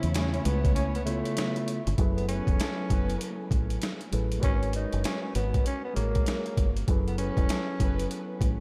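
This gritty, moody boom-bap hip-hop fragment opens with everything arriving at once: a growling tenor saxophone melody over a mellow tine electric piano, a deep dub bass, dark studio strings and a sampler-style drum kit, all at a swung 98 BPM in 4/4. The compressed, thumpy kit sits up front with a medium-tuned snare and hi-hat, re-recorded in a large room, while the round, foam-muted fingered bass holds the low end. The electric piano carries a cassette-tape colour beneath a raspy, breathy saxophone that plays in a subtone jazz style with vibrato, scooped notes and a touch of analog delay. In the background, lush, woody bowed strings add stabs with their own delay, dropping out at 3.5 seconds and returning at 7.2 seconds. A break arrives at 0.8 seconds, and the harmony moves from an altered C#7 into F#m11 and G#m11 chords under light digital ambience.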